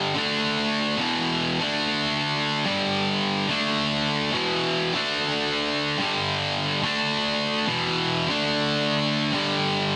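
A straight 4/4 rock pulse at 144 BPM drives this menacing ten-second excerpt, where a lone bright, overdriven, double-tracked electric guitar sits up front, picking a repeating D5, E5, D5, G5 chord cycle between E2 and D4, with light reverb and digital ambience in a dense, heavily limited modern master.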